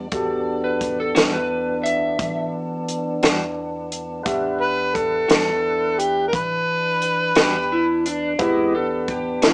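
Brooding and soulful, this slow 12/8 blues at 58 BPM in E minor rests on an Em9 chord, with a gritty, overdriven harmonica taking a scooped, tongue-slapped jazz-style solo from 4.6 to 8.1 seconds over an up-front, slightly broken-up slide guitar line, woody upright piano with audible action noise, a fat tonewheel organ with slow rotary speaker and key click, round fingered bass, dry cocktail drums with a high-tuned snare and punchy kick, and a clean, picked electric guitar with tremolo entering at 1.1 seconds, captured as a band playing live in one room with moderate reverb and a small-speaker sound.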